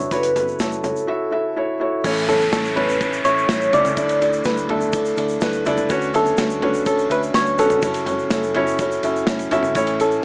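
Dry and boxy as if heard through a small speaker, this driving, earnest piano-driven pop excerpt sets a round, keys-like FM synth lead with chorus, phaser and vibrato over an intimate felt-muted upright piano up front, a foam-muted, punchy electric bass in the background, a dark, smooth small-room drum kit with a tight kick, a grainy tube shaker, and an electronic downlifter sweeping through from 2.0 to 5.9 seconds as the chords move from F#m7 through A, Dsus2 and Bmadd9/D.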